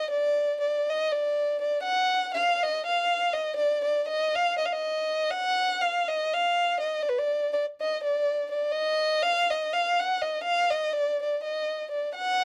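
A lone bowed violin carries this short fragment of Balkan folk music from 0.0 to 12.4 seconds, its dark, woody tone sitting up front with a smooth top end and vibrato. The piece moves in a brisk 7/8 with a straight feel, and the single player fills the whole passage with a bittersweet, virtuosic character. The melody stays in a fairly narrow upper register, giving it a focused, singing quality. Close, detailed microphones capture the instrument in fine detail, while a light reverb adds a touch of space around it. Cut from a longer performance, the clip presents one continuous section that feels like a glimpse into a larger showpiece.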